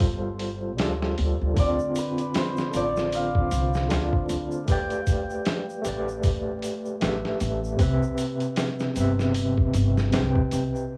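A swung 77 BPM trip hop groove in 4/4 opens this smoky, melancholic cut, with a compressed, pitched-down sampler-style kit up front (thumpy kick and medium-tuned snare under studio reverb) beside a woody pizzicato upright bass and a barky, overdriven tine electric piano played through a combo amp with tremolo, tape echo and a filter sweep. From 1.6 s a bright, shimmering hammered dulcimer carries the melody until 7.0 s, while a close tube shaker sits in the background as the chords move from G9sus4 through Dm7 and A9sus4 to Cmaj7. The recording has a home-cassette character, with vinyl crackle and small room ambience.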